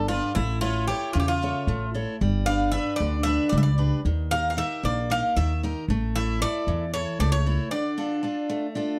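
Driving and tense, this brief cut from a longer Greek folk piece moves in 7/8 at 228 BPM counted in eighths, with a straight feel and the chords passing through A, G, Eb, back to A and landing on Dm. A bright, metallic bouzouki with doubled strings, some octave-doubled, carries the melody up front over a bright picked steel-string acoustic guitar, while a woody, thumpy pizzicato upright bass on gut strings anchors the low end. The bass drops out at 7.6 seconds for a break, and moderate studio reverb gives the whole a dark, warm production.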